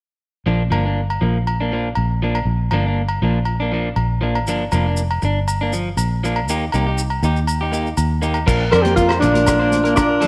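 Light reverb and a studio ambience frame this sunny highlife guitar band excerpt, which moves at 120 BPM in a straight 4/4 in Bb major. From 0.5 seconds, an up-front electric guitar at the edge of break-up, picked and compressed, carries the accompaniment over a round, foam-muted fingered bass that sits dark and forward, while close, dry agogo bells ring on top. Grainy, mellow maracas join at 4.5 seconds as the chords pass from Bb through Gm7 to Eb. At 8.5 seconds the band fills out: a clean picked electric guitar adds arpeggios, and a soul drum kit with dark cymbals, a tight kick, hi-hat and rim click comes in with a rolled-off top. Over this, an alto saxophone takes the melody with subtone, vibrato, scooped notes and a soft attack, sounding distant and roomy yet up front. A breathy, dark trumpet plays a second line further back, and both horns carry tape echo. High-tuned, thick-skinned congas follow at 8.9 seconds, sitting in the background.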